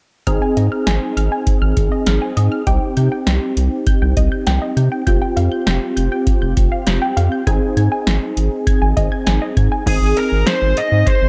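A distorted, picked fuzz lead guitar with slapback echo cuts in at 9.9 s over a driving, cool synth-pop groove at 100 BPM, where a punchy, detuned sawtooth polysynth comps funky chorused chords through Ab6, Cm, Fsus2 and Ab, a nasal analog pluck with chorus, phaser and slapback echo plays arpeggios until 9.8 s, a round, sine-like analog bass holds the low end up front, and an electro analog drum machine, re-recorded in a large room, drives the beat with a deep kick, snare, metallic hi-hats and crash, all within a dark production touched by light reverb.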